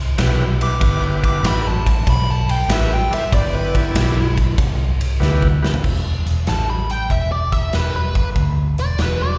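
A round, punchy, foam-muted bass opens this gritty, brooding cut from a swung blues-rock and southern-rock piece, joined by a big acoustic drum kit in a bright stone room and thick, full tonewheel-organ chords turning through a slow rotary speaker, while a dark, smooth lead guitar solos with overdrive and slapback echo until 4.4 seconds. A drum fill follows at 5.2 seconds, after which a biting lead guitar with wah, overdrive and slapback echo carries the melody from 6.5 seconds, the sound coming across as a live gig through the venue's PA with recital-hall reverb.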